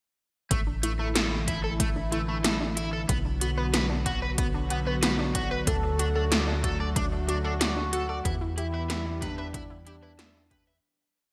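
Synthwave at 93 BPM with a nocturnal, driving mood, where a punchy electronic kick and an up-front 80s machine backbeat of gated snare and metallic hats under lush hall reverb push a tight sawtooth sequencer bass pumping against a shimmering pulse-width pad, while a round analog pluck arpeggio drifts in a 12-step loop beneath a filter sweep, a crunchy overdriven guitar repeats an 8-step picked riff through chorus and delay, and a smooth, nasal synth lead with vibrato enters at 5.7 seconds over chords moving from Asus4 through Bm and D to Em, all in bright 1980s-style digital production that fades out from 7.4 seconds.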